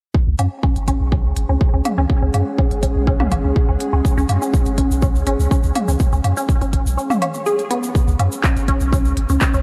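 A squelchy, wave-folded blip pluck stands out in this sparse, quirky minimal techno excerpt, its bright, detuned tone run through phaser, tape echo and a cassette-tape grain while a filter sweeps across it until 8.0 seconds. Beneath it, a punchy, up-front electronic kick and a deep sine sub bass with a pitch-drop attack hold the straight 4/4 pulse, and the kick drops out from 7.0 to 8.0 seconds before returning. A clicky, overdriven click kit of handclaps and hi-hat joins layered electronic woodblock and toms fed through analog delay, and a grainy, close egg shaker enters at 4.1 seconds. In the background, a warbling, nostalgic tape-like pad and a swarming, tense granular drone fade in slowly with reverb and chorus, both breathing with sidechain pumping over a C#sus4 chord before they stop at 8.0 seconds. The closing stretch settles on C#5, with light reverb and some lossy compression artefacts colouring the sound.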